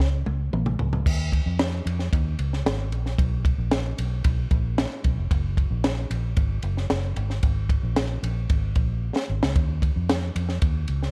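Warm and danceable, this short excerpt cut from a longer piece moves at an uptempo 113 BPM in straight 4/4, carrying the spirit of 1960s soul with its tuning set slightly below standard pitch. Only two parts play throughout: a vintage muted fingered electric bass and a compact cocktail drum kit, both sitting up front in a dry mix with little reverb. The bass is amped, round and foam-muted, its dark, punchy tone moving between F1 and E#2. The small-room kit has a high-tuned snare, a punchy kick and a smooth, rolled-off top, with crash and ride cymbals and toms filling out the sound. It opens on a drum fill that gives way at 1.1 seconds to the main groove, and a second fill arrives at 9.0 seconds.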